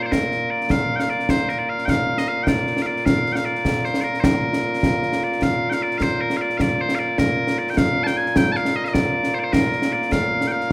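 A bright, piercing set of bagpipes leads this short stretch of Scottish traditional pipe music, sounding continuously up front and carrying the melody from the first moment through to 10.7 seconds. Concert snare drum and concert bass drum join at 0.1 seconds, acoustic and close, with a live room sound and bright cymbals. The tune moves in a straight 6/8 at 102 beats per minute, counted in dotted quarters, and sits in B-flat major, tuned slightly high with A at 441 Hz. Its single strain is heard twice, the repeat arriving at 5.4 seconds, giving the passage a stirring, ceremonial character. A moderate recital hall reverb surrounds the band, lending the pipes and drums a sense of space.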